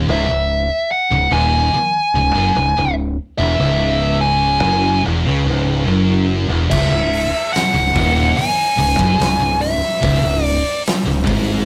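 A rough rehearsal-room recording with tube saturation and moderate studio reverb frames this ominous, sludgy stoner and doom metal excerpt, where a bright, double-tracked high-gain guitar and two dark fuzz guitars, one very quiet and one in the background, grind out a low riff over a growling, overdriven fingered bass up front, while a compressed fuzz lead guitar with wah carries the high melody and an oversized, low-tuned drum kit with a boomy kick, fat snare and gritty, saturated sound enters at 6.7 s.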